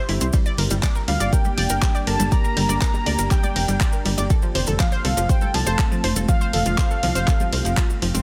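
Opening on an evolving wavetable pad holding chorused, reverb-washed chords in the background and a round, detuned analog pluck spinning delayed arpeggios, this bittersweet, dreamy progressive house excerpt in G minor at 121 BPM moves from Gm to F as a tight, punchy sawtooth sequencer bass drives beneath an up-front overdriven electronic kick, a deep house kit of handclaps, hi-hat and ride, grainy maracas and very quiet hand-struck bongos and congas. A thick, bold unison lead enters at 1.1 s carrying a high melody through dub echo, and the pad, pluck, bass and lead all pump against the kick in a dry mix.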